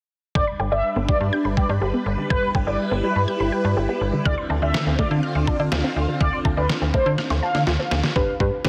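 Heavily compressed to a radio-like sound and bathed in a lush hall reverb, this nostalgic, upbeat synth-pop excerpt sets a gritty, thumpy trip hop sampler-style drum kit and a snappy, metallic slap-like FM bass up front beneath swirling, vintage phased string machine chords, squelchy resonant blip pluck arpeggios and a brassy, dark mellow synth brass second line with vibrato, moving from G to Dm7 at 4.3 s before a drum fill at 7.2 s leads into a soft round pluck entering at 8.2 s.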